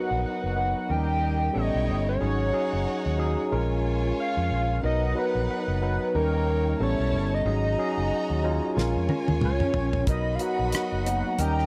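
Romantic and warm, this lush 1970s-style soul fragment sets a hollow, woody square lead with chorus on the melody over a barky tine electric piano with phaser, an up-front fingered electric bass and an expressive, bowed violin section carrying a second line. The harmony moves through major-seventh, dominant, ninth and suspended chords, with a small room ambience and light reverb around the parts. At 8.8 seconds a damped 70s drum kit with a fat snare and tight kick enters with a fill, and at 9.1 seconds a dark, compressed electric guitar slips in briefly behind the others with tremolo.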